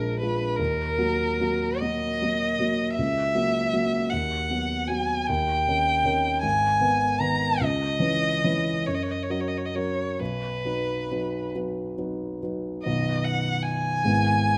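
A single bowed violin carries the melody up front, its rich tone shaped by expressive vibrato and portamento. Beneath it, a warm grand piano provides accompaniment from its deepest bass register into the middle of the keyboard, also placed close and up front. This is a solemn, melancholic romantic classical duo in B major and 6/8, moving slowly at about 43-54 BPM in dotted quarters with a flexible, rubato feel. The harmony drifts through minor and seventh chords such as D#m, G#m and C#m7 before reaching B, and a new section begins at 12.9 s. Close, detailed microphones and a light reverb give the sound a clear, intimate presence in this short cut from a longer piece.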